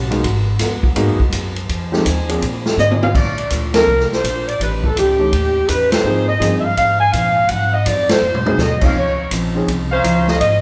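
Big band swing at 165 BPM with an energetic, swinging feel. A punchy, up-front drum kit and woody pizzicato upright bass drive the groove, while an intimate grand piano with audible action noise and a picked dreadnought guitar in the background comp through chords such as Abm9, Bbmaj7 and Dbmaj9. After a drum fill at 2.8 seconds the tight, smooth-topped saxophone section takes the melody with light vibrato, band accents punctuate the line, and a soft-attack trumpet section adds brief stabs at 9.9 seconds, all bathed in a live room's lush reverb.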